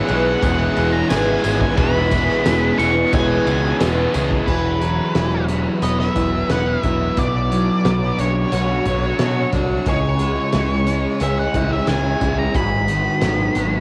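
A loose indie drum kit with a fat snare, punchy kick and dark cymbals keeps a straight 4/4 pulse at 89 BPM alongside a growling, overdriven electric bass, with a jingly tambourine appearing from 0.4 s until it drops out at 4.3 s, in this hazy, blissful shoegaze and dream pop excerpt in E major. Behind them, a biting overdriven guitar with lush chorus, a raw garage guitar with reverse reverb and a tight, double-tracked distorted riff that stops at 4.5 s build a dense wall. A dark octave-fuzz lead guitar with analog delay carries the melody over a very quiet shimmering twelve-string acoustic arpeggio and vintage sawtooth string-machine violins. Everything sits in a light small-room reverb with the grain of a home cassette recording as the chords move from E6 through Esus2, Bmadd9 and C#m to G#m7.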